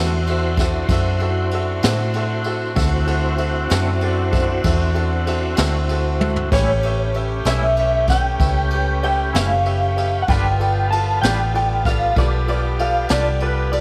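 A small room gives this laid-back, gritty slow blues in 12/8 an intimate feel, with a round, punchy muted electric bass up front and a brush-played jazz kit with a boomy kick, high-tuned snare and dark cymbals entering at 0.3 seconds. Behind them, a tonewheel organ holds smooth chords through a slow rotary speaker with key click, a tight vintage horn section sustains harmonies, and a brilliant upright piano and a twangy, scooped electric guitar with tremolo sit in the background. After a drum fill, a dark, slightly broken-up lead guitar through a small old amp takes the melody at 6.5 seconds as the chords move from D7 to A7 and then G7.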